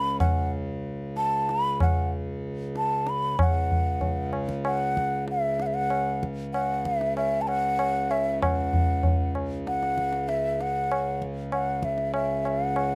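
A mellow, hollow bansuri carries the melody up front with airy vibrato and a crisp attack over a reedy, breathing harmonium drone and close, dry, high-tuned tabla entering at 0.2 seconds, in this meditative, solemn Hindustani excerpt in raga malkauns on C# that starts at 96 BPM in 4/4 and speeds up throughout its 12.9 seconds.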